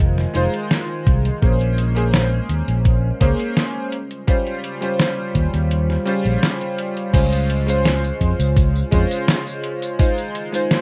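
Melancholic and hazy, this vaporwave excerpt drifts at 84 BPM in a straight 4/4 over Fm7, Bbm9 and Eb13 chords before settling onto Dbmaj7 at 7.1 seconds. A bright, clangy electric grand piano with chorus, 12-bit sampler grit, tape echo and plate reverb sits up front beside an amped fingered bass with tube saturation, while a dark, warbling, detuned pad with slow attack and long release glows beneath. A thumpy electronic kick drops out between 5.7 and 7.1 seconds, and a detuned 8-bit drum machine supplies snare, hi-hat, tambourine and crash, all heard through a rough cassette-toned home demo mix with light reverb.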